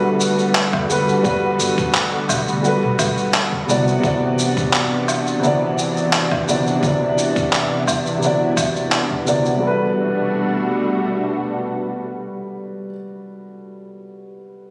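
A dark, mellow concert grand piano opens this relaxed sunset chillout excerpt in G major at 86 BPM, sounding boxy and up front under a filter sweep and delay, while a silky, vintage string machine holds warbling sustained chords thickened by ensemble chorus. Gritty, sampler-style percussion of electronic shaker, handclaps and woodblock arrives at 0.2 seconds, joined at 0.7 seconds by a thumpy, tape-flavoured electronic kick and a woody upright bass plucked on gut strings, which stops at 3.9 seconds. The groove carries a light 16th-note swing in 4/4, and the harmony moves from Gmaj9 to Cmaj9#11 before returning to Gmaj9 at 9.6 seconds. The kick drops out at 9.2 seconds, and the remaining percussion falls away at 9.6 seconds as the filter sweep ends. The string machine stops at 12.9 seconds, leaving the piano alone until it stops at 14.7 seconds. A lush, wet hall reverb and compression surround the sound, which was recorded on a phone in the room.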